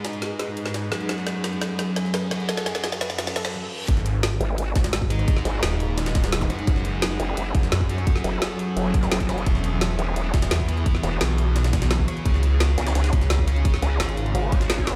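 A snarling, detuned saw bass leads this dark, futuristic drum and bass excerpt from the drop at 3.9 seconds, joined by a nasal vowel-sweep wobble bass and a tight, up-front electronic kick, over a drum kit with woody snare and bright hats, a gritty, pitched-up jungle sampler kit in the background, sludgy double-tracked guitar stabs, and a swarming drone of sustained chords with phaser, while a lo-fi, warbly pluck arpeggio with a filter sweep and a very quiet riser, reverse cymbal and zap fill the opening build-up, the whole mix heard in a stone-room reverb.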